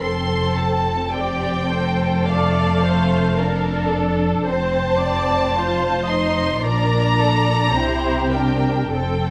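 Serene and warm, this brief fragment of a slow romantic movement for string orchestra drifts in 4/4 at 47-57 BPM with a rubato feel in F major, passing through F, F7, Bbmaj7 and C. The violins carry a smooth, distant melody high above a second violin line that sits expressive and up front, while violas add lush, even accompaniment and the focused cellos and woody double basses anchor the bass with vibrato-rich bowing. All five sections play throughout the 9.3 seconds, held in a moderate recital hall reverb with a 1.7 s decay.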